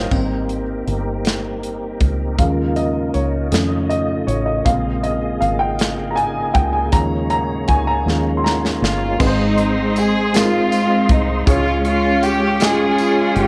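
A dark, woody upright piano opens this slow gospel passage in 6/8 with soulful, reverent feeling, taking a solo role through the first 9.2 seconds over sustained tonewheel organ chords colored by slow rotary speaker and chorus vibrato. A fingered electric bass sits low with a round, foam-muted tone, while a polished studio drum kit with a punchy kick and medium-tuned snare joins at 0.1 seconds, bringing crash, splash, hi-hat and snare into play. The harmony drifts through rich extended chords such as Abmaj9, F7b13 and Bbm9 before a drum fill leads into a plainer resolution on Ab and Db. At 8.8 seconds a dark chamber string section takes the melody up front, bowed with light vibrato, soft attacks and a touch of tape echo. A bright, jingly tambourine sits distant in the background from 9.2 seconds, and the whole passage carries a moderate spring reverb alongside a small room sound, an excerpt cut from a longer piece.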